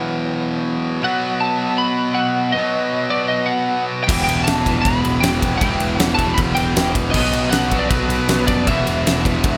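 Menacing, driving hard rock at 157 BPM, where a bright, up-front overdriven guitar riff and a very quiet, gritty tonewheel organ with slow rotary swirl open the cut, a twangy, chorused lead guitar melody enters at 1.0 seconds, and at 4.1 seconds a cranked stack guitar riff in the background, punchy fuzz bass and a huge arena drum kit with a fat snare, boomy kick and bright cymbals join over light reverb and a bright 1980s-style digital sheen, moving from E5 through B and Em.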